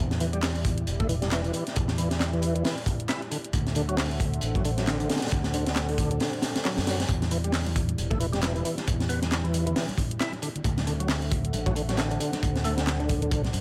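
A swung breakbeat groove at 135 BPM in 4/4 drives this raw, swaggering excerpt in E minor, its sixteenths pushed with a loose shuffle. Up front, a crunchy acoustic breakbeat kit delivers a punchy kick, a high-tuned snare and hi-hat with a gritty, saturated character and a rolled-off top, while a layered electronic garage kit adds handclaps and more hi-hat beneath it. A bright, direct fingered electric bass with tube saturation holds the low end from E1 to F#2, and an overdriven tonewheel organ plays the riff with key click, third harmonic percussion, chorus vibrato, a slow rotary speaker and delay. Behind them a dark, detuned sawtooth analog pad sustains chords with a slow attack, chorus and sidechain pumping, moving between Em7 and D7 throughout. Very quiet, damped congas with a thick skin join at 7.2 seconds, and the whole sits in a small room ambience.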